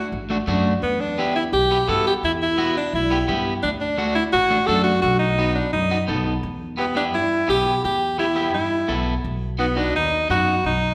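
A bright, up-front alto saxophone carries a pop-style solo melody with light vibrato through this fiery, driving cumbia fragment at 171 BPM, moving from E minor into E harmonic minor at 6.4 s, while a woody pizzicato upright bass and a picked, scooped electric guitar at the edge of break-up support it inside the wet reverb of a recital hall.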